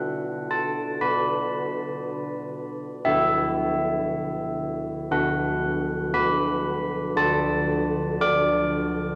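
Old church bells ring out alone from the first moment, in a short excerpt of a classical tune written for bells, serene yet festive in mood. The tempo is a slow 58 BPM in 4/4 with a straight feel, in B minor, and the bells span D3 to D6. Their bronze tone carries a distinct minor-third overtone and a clangorous, beating shimmer, softened by a padded clapper. The harmony rests on B minor, moves to B minor over D at 3.1 seconds, and settles on D major at 7.2 seconds. A deep cathedral reverb with a 5.2-second decay surrounds the bells, and the listener seems placed further back in the room even as the bells stay mid-forward.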